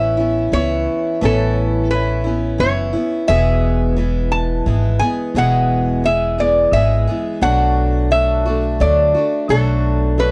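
A waltz in three, played with a straight feel, carries this short cut from a longer acoustic folk piece, its mood pastoral and nostalgic. A lap resonator guitar, played slide with fingerpicks, sings the melody in a mellow, nasal, metallic voice that sits in the upper register. Beneath it, a picked acoustic archtop guitar sits up front with a warm body and the occasional finger squeak, while a woody pizzicato upright bass on steel strings anchors the low end, also close and present. The harmony moves from Aadd9 to E at 3.3 seconds and on to Bm7 at 7.4 seconds, all three instruments playing throughout. The sound is dry and intimate, like a close 1970s-style studio session with little reverb.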